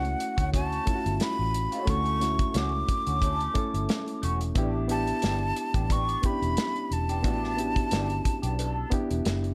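A breathy jazz flute with vibrato and a soft attack carries the melody up front, falling silent at 8.9 seconds, in this lush 1970s-style soul excerpt at 89 BPM in D major with a smooth, lightly swung 16th-note feel. Beneath it, a barky, lightly overdriven electric piano with spring reverb plays the accompaniment, a twangy, slightly broken-up electric guitar with wah adds a picked riff, and a dark, round, punchy muted electric bass sits up front along with a warm soul drum kit of hi-hat, tight kick and snare. The harmony moves from Dmaj7 to A9sus4 at 4.6 seconds, all set in a light studio reverb.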